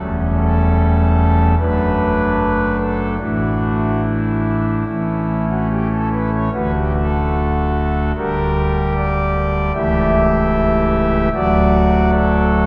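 Bathed in a wet church reverb with a 3.6-second tail, this serene, reverent classical chorale fragment in D major moves at a straight 74 BPM in 4/4 as a solo pipe organ sits up front on thick, romantically voiced foundation stops reaching from C#1 to E5, its chords passing from A7/E through Gm/D before settling on D at 11.3 seconds.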